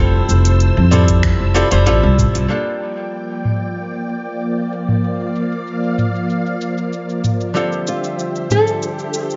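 A dark, fingerpicked nylon-string guitar melody with tape echo opens this wistful, smooth sunset chillout excerpt in G dorian at 95 BPM. It sits over a clean, compressed hollow-body archtop guitar, also with tape echo, a silky vintage string machine with ensemble chorus, and a woody, growly upright bass played pizzicato up front until 2.4 seconds. A smooth R&B kit of finger snaps, metallic hats, shaker and toms, briefly joined by a knocking electronic kick, carries a filter sweep from 2.5 seconds as the chords move from Fmaj7 through Gm7 to Dm11, and the nylon guitar returns at 7.9 seconds within a light digital ambience.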